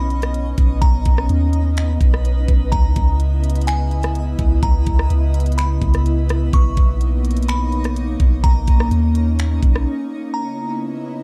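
A deep, round 808-style bass sits up front in this spacious, ethereal cloud-rap excerpt, its sine-like notes striking fast and then decaying in a dark, soft way. It moves at 126 BPM in 4/4 with a half-time feel, in C# dorian, drifting between Bmaj9 and C#m9 chords. An up-front trap kit enters at 0.1 s with a knocking kick, crisp hi-hats, finger snaps and rim clicks. Behind it, a vintage FM pad swells in slowly and holds sustained chords with a warbling ensemble chorus, its own reverb and a gentle sidechain pumping. Higher up, a crystalline, full-bodied synth bell plays a bright melody through chorus, a low-pass filter and digital delay, while a faint granular texture twinkles with an octave-up shimmer and reverb of its own. The bass and drums stop at 9.9 s for a brief break, leaving the bell, pad and texture hanging in a dark, digital ambience.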